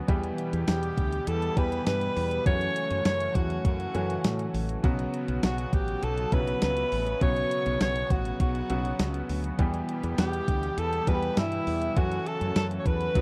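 Clear baby grand piano, a very quiet crunchy overdriven guitar and a soft, detuned sawtooth pad with chorus and tremolo open this nostalgic, dramatic 1980s-style pop excerpt at 101 BPM. At 0.1 s they are joined by a round, hollow-toned fretless bass and an up-front, tape-tinged drum machine with thumpy kick, fat snare, hi-hat and tambourine. At 0.7 s a breathy, whispered alto saxophone takes the melody with light vibrato, while a distant, lush violin section plays a very quiet second line high above, over chords moving from Em through F#m7 to Bsus2 in a dark production with moderate spring reverb.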